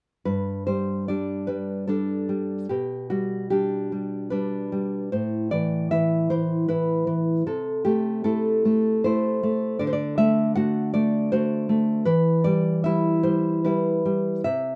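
In a three-beat metre with a free, rubato pulse, this romantic piece for solo classical guitar unfolds with a nostalgic, warm mood. The nylon-string guitar plays alone from 0.3 to 14.8 seconds, fingerpicked across a range from G2 up to F#5. Its tone is dark and acoustic, sitting up front in the mix, with finger squeak adding an intimate, human detail. The harmony moves through G5, G/B, A5, Am/C and D7 before arriving on Em. A light reverb gives the instrument a touch of space, and the fragment is drawn from a longer piece.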